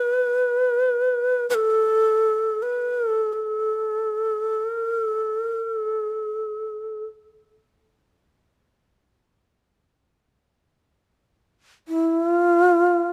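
A lone bamboo shakuhachi opens and carries this 13.1-second passage of meditative, austere Japanese chamber music, unfolding in free time with tuning set to A4 = 436 Hz. Close and up front, its breathy, bright tone shows a crisp, chiffy attack, vibrato and an unsteady quality as it moves between F4 and B4. Light reverb and detailed close miking keep every grain of breath in view.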